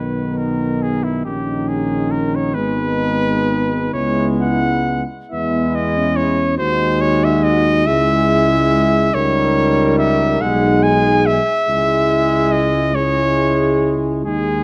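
Moving in a slow, rubato 6/8 at about 47 dotted-quarter beats per minute, this solemn, yearning hymn-like piece for brass band unfolds over a 14.6-second passage cut from a longer work. A mellow cornet carries the melody up front, its soft attack, smooth top and light vibrato giving the line a tender, singing quality as it ranges from E4 to G#5. Behind it, a French horn section plays a second line as a blended ensemble, while a clear, close-miked trombone and a euphonium with gentle vibrato fill in the accompaniment. A tuba anchors the bass, reaching down to G#1 with a rounded, smooth tone. The harmony moves through G#m, C#m7 and D#7/C# before settling on C#m, captured with close, detailed microphones and a light touch of reverb.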